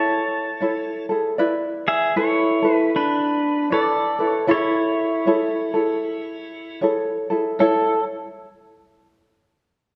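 A bright, twangy electric pedal steel guitar sits up front, carrying the melody with clean, compressed tone, played with fingerpicks and shaped by slide and volume swells. Beside it, an acoustic tenor ukulele, thumb-plucked with a light, warm touch, supplies the accompaniment, also placed close in the mix. The feel is Hawaiian, dreamy and sunny, with a gentle swing in 4/4. Harmony moves from Amaj7 to E7sus4 at 1.4 seconds, back to Amaj7, and settles on A at 7.6 seconds, though both instruments stop at 8.0 seconds. The pair is bathed in a wet recital hall reverb, and the clip is cut from a longer piece.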